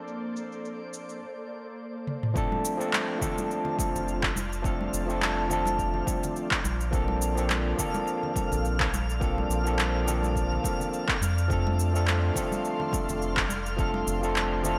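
Sunset chillout with a sunny, smooth mood and a light swing, cut from a longer piece and set in a bright 1980s-style digital sound with plate reverb. A barky, overdriven tine electric piano with delay carries the chords up front, while an ethereal detuned pad with ensemble chorus and a twinkling granular texture with octave-up shimmer hover in the background, moving from F6 to Bbmaj9 and back. A filter sweep opens the piece and a drum fill leads into the groove at 2.4 seconds, where a punchy electronic kick joins the deep house kit's gated-reverb handclaps, shaker and toms, with acoustic congas behind them, and a round, deep analog bass with tube saturation arrives up front at 3.9 seconds.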